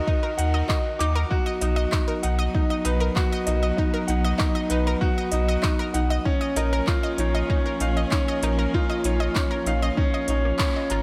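Lightly reverberant with a digital ambience, this melancholic, moving stretch of piano and strings electronica runs at 97 BPM in 4/4 through Ebm, B and Bbm. An intimate, clear baby grand carries the riff up front, its action noise audible and its long sustain trailing into tape echo and shimmer reverb, while a distant string quartet holds rich, expressive bowed chords with vibrato and portamento, pumping under sidechain along with the detuned, chorused analog pluck arpeggios. A layered electronic kick and a round sine sub bass sit forward beside a deep house kit of handclaps and smooth hats, and the band hits an accent at 10.6 seconds.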